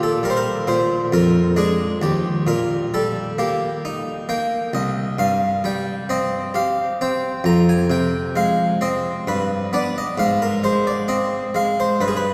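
A lone harpsichord with a round, full, plucked Italian-style tone on a single set of strings carries this grave, introspective baroque-style suite movement in a slow, rubato 3/4 at 66 BPM, drifting through Eb and diminished harmony before settling into C minor at 4.7 s and moving through F minor, G and Ab toward the close at 12.3 s, its close-miked, up-front sound set within a long cathedral reverb heard from further back in a passage cut from a longer piece.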